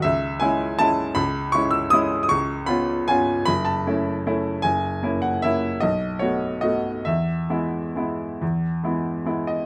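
A graceful, elegant classical piano waltz in E major and 3/4, cut from a longer piece, moves with rubato between 129 and 166 BPM as a solo baby grand, brilliant and up front with short sustain, spans F#1 to E6 through C#m, C#7, F#m7, F#7 and B7 before settling on E at 7.1 seconds, captured by close, detailed microphones in a dry room.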